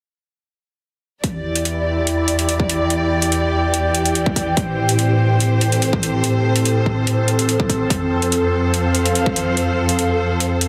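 This menacing, chaotic slice of heavy wobble dubstep opens at 1.2 seconds with a lush, bowed symphonic string section holding sustained chords under sidechain pumping, while a punchy, overdriven electronic kick and metallic, overdriven hi-hats drive a half-time feel at 144 BPM in E phrygian. An airy, breathy pad with a detuned sawtooth edge, noise layer and chorus drifts in at 1.5 seconds as the harmony moves from Em7 to Am7 and on to F. The kick drops out at 9.3 seconds, and the strings, hats and pad carry on in a moderate plate reverb within a dense, heavily limited modern master.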